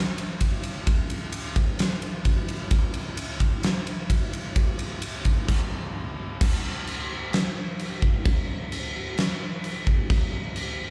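A driving, straight 4/4 rock beat at 130 BPM comes from a huge arena drum kit, up front and aggressive, with a punchy kick, fat snare, bright crash and ride cymbals, and a pumping room sound. After a brief stop from 5.5 to 6.4 seconds, a new passage begins, carried by the kit until 10.7 seconds. Cut from a longer piece, it sounds like a live gig heard through the venue's PA, with light club reverb.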